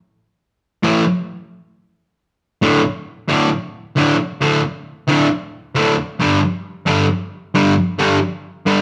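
Rock with a raw, swaggering straight feel, cut from a longer piece, where a bright, distorted fuzz guitar, double-tracked and up front, plays solo from 0.8 seconds, moving from A5 to D5 at 2.6 seconds and G5 at 6.2 seconds in a band-in-one-room sound with moderate large studio reverb.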